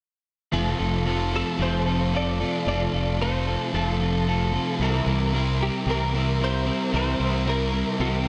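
In this hazy, dreamy rock passage at a straight, steady pace, a thick fuzz guitar plays a dark, distorted riff up front from 0.5 seconds alongside an overdriven electric guitar whose compressed, picked riff carries a reverse reverb. A fingered electric bass, round and punchy, anchors the low end from the same moment, while the fuzz guitar's analog chorus adds a shimmer to its grit. At 1.4 seconds a direct-recorded clean electric guitar enters with a scooped, picked melody in a higher register, coloured by ensemble chorus and delay. The harmony moves from F6 to C7 at 4.8 seconds, and the whole short cut from a longer piece floats in a moderate plate reverb that leaves the mix soaked and dreamlike.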